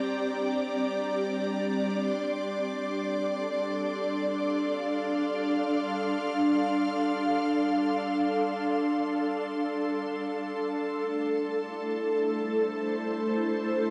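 Serene and melancholic, this free-time ambient excerpt floats on an ethereal, airy pad of sustained chords with ensemble chorus, up front over a faint bowed-like drone touched by phaser and a clear, floating violin section high above, both fading out across the 13.9 seconds as the harmony drifts from C7sus2 through Dm7 to Am7 in a wet plate reverb.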